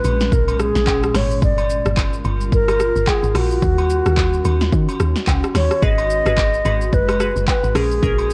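Heard through worn, warbling cassette tape with a drifting pitch and a faint mains hum, this hypnotic, deep amapiano excerpt moves at 109 BPM in G# dorian with a swung sixteenth-note feel. A bright, reedy alto flute carries the melody up front with a digital delay, over an ethereal pad with ensemble chorus and sidechain pumping, a round, dark log drum bass, and an overdriven deep house kit with punchy snare and metallic hats. Distant agogo bells and woodblock sit back in a large room, and a glassy, crystalline wavetable pluck adds chorused, delayed stabs from 5.8 seconds as the chords move from A#m7 through Gm7 and D#m7 to G#m7.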